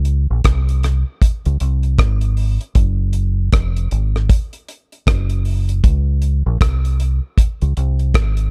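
A deep, round fingered electric bass opens this sweet, smooth lovers rock reggae groove at 78 BPM, its punchy, amped tone sitting up front in a swung 4/4 feel. From 0.1 seconds a damped 70s acoustic drum kit joins with hi-hat, rim click and a tight kick, its sound dry. Both parts play through to 8.5 seconds in a dark, warm production with little reverb, in a short section cut from a longer piece.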